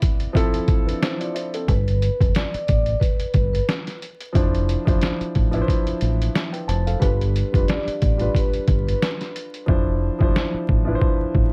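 A swung 90 BPM boom-bap beat from a muffled, pitched-down, compressed sampler-style drum kit with a thumpy kick and medium-tuned snare opens this tough, gritty hip-hop excerpt alongside a dark, mellow grand piano moving through Fmaj7, G and Dm7/F chords; a round, deep dub electric bass and a ringing, soft-mallet vibraphone with slow motor vibrato and delay join at 1.7 seconds, and the hi-hats fall away at 9.7 seconds, with worn, warbling tape and vinyl crackle coloring the whole recording.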